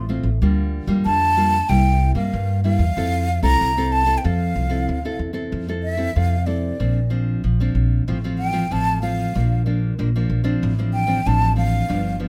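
Sunny and playful, this short excerpt of samba and choro moves at 94 BPM in a straight 4/4 in F major, passing through chords such as Fmaj7, Bbadd9 and Dm7/A. A breathy concert flute carries the tongued, expressive melody with vibrato and lifted highs, moving into a solo at 5.5 seconds, while a full-bodied, fingerpicked nylon-string guitar supplies classical accompaniment and a woody pizzicato upright bass anchors the low end. All three sit up front in light reverb.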